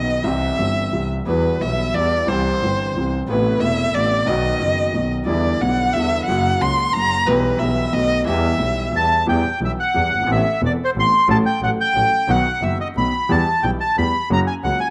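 Spring reverb lends this brief, tense tango a studio sheen and a lingering tail, giving the dramatic passage a shadowy depth. A dark, close violin opens with a bowed solo, its soft attack, vibrato and expressive portamento carrying the line until about 9.1 seconds. Beneath it, a baby grand piano with an open, long-sustaining tone supplies the accompaniment, while a distant, intense double bass, bowed with vibrato by a single player, anchors the low end throughout. At around 9.0 seconds a reedy bandoneon, boxy as if heard in a small room and placed up front, takes over the melody in the upper register. The rubato triple-metre feel and minor-key chords moving through added-ninth and seventh colours heighten the music's restless drama before the cut at 14.9 seconds.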